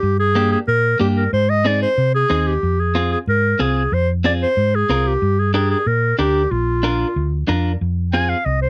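A dry, close recording in a 1970s studio style frames this fiery, passionate Latin fragment in F dorian, moving at a brisk 185 BPM in straight 4/4. A clear, close-miked clarinet carries the melody in a classical manner up front, over a round, punchy hollow-body electric bass that runs through the full 8.7 seconds. A clean, compressed, picked electric guitar comps from 0.4 to 8.4 seconds as the harmony shifts among Gm, Ab, Fm and Bb.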